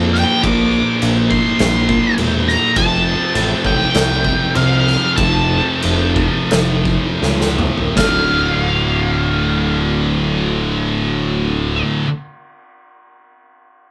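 Stoner and doom metal, hypnotic and ominous, cut from a longer piece and caught as a rough rehearsal-room take, in which a bright, scooped high-gain guitar, a compressed fuzz guitar in the background and a very quiet, dark fuzz guitar churn the riff over a fat, up-front analog bass with a wave-folded sawtooth tone and a filter sweep, while an octave-fuzz lead guitar with wah plays high above and an oversized low-tuned drum kit with a boomy kick and a saturated, gritty room sound plays through a slowdown from 2.8 s and a fill at 7.2 s before dropping out at 8.2 s.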